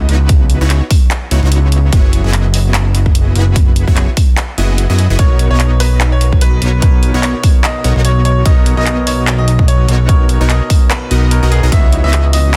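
A detuned supersaw stab riff and a fat, thick analog bass open this playful, lush future bass excerpt together at 0.0 s, both pumping under sidechain compression at 147 BPM in 4/4 with a half-time, lightly swung feel in B major. A layered big-room dance kit of handclaps and hi-hat, carrying studio reverb and soft clipping on the snare, joins almost at once, while a punchy, up-front electronic kick anchors the groove before dropping out between 4.8 and 5.2 s. At 5.2 s the harmony moves from C#m11 and F#9sus4 to Bmaj9, and a brilliant, intimate grand piano enters with the melody, its action noise audible and its long sustain trailed by tape echo. Alongside it, a barky tine electric piano, lightly overdriven through a combo amp, sits in the background as accompaniment, also breathing with the sidechain. The sound is a dense, heavily limited modern master set in digital ambience, returning to C#m11 near the end of this cut from a longer piece.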